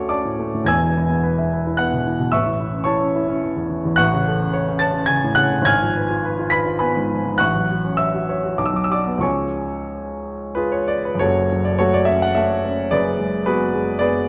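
A dark production sets a woody, up-front upright piano inside a moderate concert-hall reverb. This fragment of a romantic character piece for solo piano moves in a rubato 3/4 between 88 and 112 BPM, its bittersweet, passionate lines ranging from E1 to Cb7. Beginning in A major, it turns toward F# minor at 4.0 s and moves into a new section at 11.2 s.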